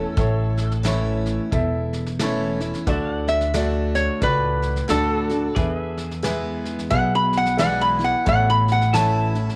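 Sunny and nostalgic, this short honky-tonk and classic country excerpt moves at 89 BPM in 4/4 with a swung eighth-note feel in A major, passing through A, D and E before returning to A at 8.3 seconds. A lap resonator guitar, played with fingerpicks and a steel bar, carries the melody up front as a solo for the full 9.6 seconds, its tone metallic and nasal as it ranges from A4 to B5. Beneath it, a brilliant, woody upright piano and a full-bodied jumbo steel-string acoustic guitar share the accompaniment, while a clean, twangy pedal steel guitar with subtle chorus and volume swells holds sustained chords in the background. An upright bass, plucked and growly, joins at 0.2 seconds alongside a soft brush drum kit with a tight kick, medium-tuned snare and hi-hat. The whole is framed by light reverb and small room ambience, and the piano, acoustic guitar, pedal steel and drums carry the hazy character of a home recording on cassette tape.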